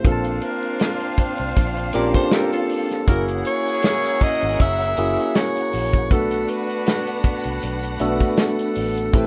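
A rough home-demo mix with light reverb carries this lush, silky and bittersweet 1970s-style soul excerpt, set in a gently swung sixteenth feel over Bbmaj9, F#7 and Bm7 chords. A clear, close-miked alto saxophone sings the jazz-style melody with vibrato, while a barky, lightly overdriven tine electric piano sits up front, a distant violin section bows a lush second line in the background, and a tight vintage horn section adds stabs. Underneath, a roomy soul drum kit with a tight kick, a dark, foam-muted fingered bass entering at 0.1 seconds and a grainy egg shaker hold the groove, while a twangy, slightly broken-up electric guitar plays a brief riff from 1.9 to 3.1 seconds.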